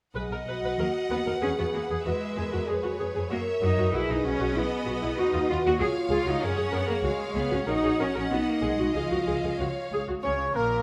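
The recording sounds like a studio orchestra in a moderate scoring-stage reverb, with a vinyl crackle under it. This is a short cut from a spirited, graceful classical-period movement in B major, moving quickly at 95 BPM in a straight 2/4. A focused, clear violin section carries the melody over a smoother second violin line, while a viola section with soft attacks and expressive portamento fills in the accompaniment. A mellow French horn section holds loose sustained chords. Rich double basses anchor the bass, joined by a more distant cello section at 0.8 s. The harmony passes through F#7, G#m7 and C# before settling on A#m at 10.2 s, where flute, oboe, clarinet and a background bassoon enter briefly, the flute adding a hollow, pure tone.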